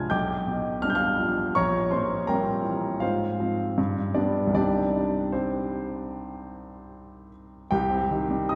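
Heard from further back in a church whose long, wet reverb hangs around it, an intimate, natural-sounding grand piano with audible action noise plays alone in this brooding, stormy fragment of a romantic classical character piece, moving with rubato through G7/B, C7/Bb, Fm/Ab and G7 before arriving on Cm at 4.6 seconds.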